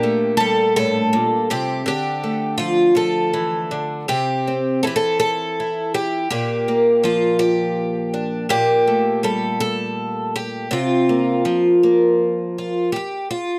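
Warm and peaceful, this short folk excerpt features a lone picked twelve-string acoustic guitar in an unhurried 6/8 at 54 beats per minute, with a straight feel. The guitar sits up front, its octave-doubled strings giving a shimmering, boxy character that spans from F2 to A4. The harmony moves through Gmadd9/Bb, Dm, C and Bb6, returns to Gmadd9/Bb, and settles on C7sus4 before the chords stop at 12.9 seconds. The guitar plays on until 13.6 seconds, cut from a longer piece. Close, detailed miking with little reverb keeps the instrument intimate and present.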